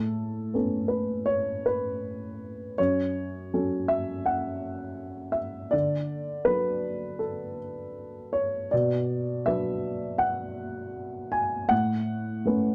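A dark, woody upright piano opens this short neoclassical minimalist excerpt and carries it alone from 0.0 to 12.7 seconds. The mood is reflective and wistful, set in B minor at 80 BPM in 4/4, with a rubato feel that lets the time breathe. The harmony moves from Aadd9 through F#m, D and Bm before settling back on Aadd9 at 11.7 seconds. Spanning F#2 to G#5, the piano has a mellow tone and short sustain, and it sits up front in the mix. A light reverb and a warm production frame this brief passage, which is cut from a longer piece.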